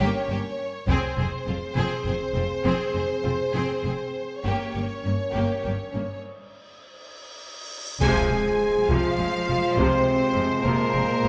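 This epic orchestral film-score fragment opens on a diminished chord, with lush bowed violin sections carrying a vibrato-rich melody and a focused second line over a soft-edged, distant viola accompaniment. A dark French horn section sustains chords while close cello and woody double bass sections anchor the low end. At 68 BPM in 12/8, the mood is relentless and heroic, and a taiko ensemble struck with hard sticks joins briefly from 0.9 seconds as the harmony moves to F minor. The build-up breaks off while a huge cymbal swell begins at 6.4 seconds. At 8.0 seconds the band hits an accent in F minor: the taiko return, a clear trombone section sustains chords in the background, a punchy, roomy solo trumpet adds stabs on C5, and the cymbal impact rings out. A wet scoring-stage reverb lends the sound a grand space.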